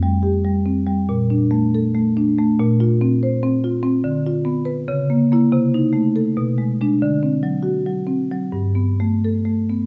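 A solo marimba played with medium mallets carries this flowing, reflective contemporary classical excerpt, its woody padauk bars sitting up front and ranging from F2 to C5 in a rubato 7/8 at around 256-292 BPM in eighths. The harmony drifts from G7sus4/F through Bbmaj7, then slides through a chain of minor sixth chords from Dm6 at 4.0 s down to Bm6, before D7 resolves to Gadd9 at 8.5 s. A recital hall reverb with a 1.4-second tail surrounds the instrument, and the passage is cut from a longer piece.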